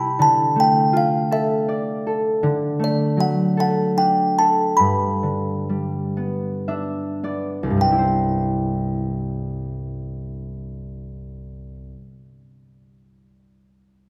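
A tinkling, slightly out-of-tune music box carries a delicate melody over a thumb-plucked, ringing concert harp from the very start of this tender, innocent children's lullaby in C major, a slow, rubato 6/8 at 33-54 BPM that slows down from 2.4 s to 7.8 s, where a harp fill beginning at 6.2 s leads into a new section, with both instruments up front in a reverberant recital hall in this short excerpt cut from a longer piece.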